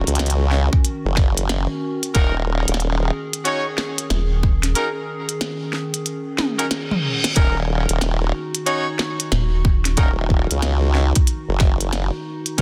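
Playful and funky, this glitch hop excerpt moves at 92 BPM in 4/4 with a swung sixteenth-note feel, sitting in Eb minor pentatonic over an Ebm7 chord. A warbling, nostalgic lo-fi pad made of square and triangle tones holds sustained chords throughout, carrying chorus, built-in reverb and sidechain pumping. A formant-sweep wobble bass, sawtooth and sine with a fast attack, drives the low end up front, dropping out from 3.1 s until it returns at 7.4 s, while a hollow, rubbery square bass with a resonant filter pluck and moving notch pops in for two short bursts on Eb1. The glitchy drum kit brings clicky hats, toms and a tiny, softly clipped snare, joined at 0.7 s by a punchy, layered electronic kick, and a drum fill from 6.4 s rides alongside a brief reverse cymbal. From 2.1 s a mellow horn section adds pop-style stabs colored by tape echo and sidechain pumping, all set in digital ambience with a dense, heavily limited modern master.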